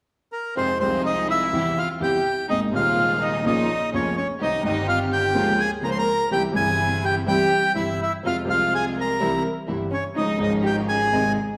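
A reedy, close-miked bandoneon opens the melody at 0.3 s in this melancholic, sultry tango excerpt in F minor, played rubato around 125 BPM, joined at 0.6 s by a distant solo violin singing a second line with vibrato and portamento, a clear vintage grand piano with long sustain up front, and lush, focused string-section stabs in the background, all playing live in one large, reverberant studio room.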